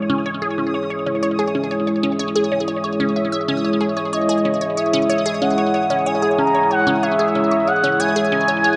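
Expansive and cosmic, this short cut from a longer piece of ambient, sequencer-driven space music moves at 93 BPM in a straight 4/4, resting on a single C#madd9 chord in C# minor. A sweeping, resonant pad holds sustained chords throughout, its detuned sawtooth body thickened by a sub octave and chorus, with a slow filter swell that keeps it evolving. Alongside it, a juicy, squelchy blip pluck repeats a riff from the start, its fast attack and short decay shaped by a moving notch, phaser and delay. Far in the background, a bubbling texture of random filter steps drifts high above, fading in across the whole 8.8 seconds under chorus and its own reverb. At 4.1 seconds a smooth, expressive lead enters up front with the melody, gliding on portamento and vibrato with a mellow, soft-edged tone. The mix is soaked in spring reverb and echoes, with a dark top end that keeps the space hazy.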